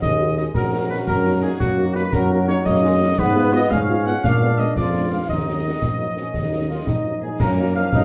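A warm, up-front tuba anchors this stern, resolute military-style march for wind band in Eb minor, moving at 114 BPM in 6/8 as a mellow cornet carries the melody over a clear woodwind second line, tight trombone chords, a very quiet French horn section, snare, bass drum and dark clash cymbals, with a distant wooden piccolo and a very quiet euphonium joining at 7.2 seconds, all heard from further back in a reverberant large room.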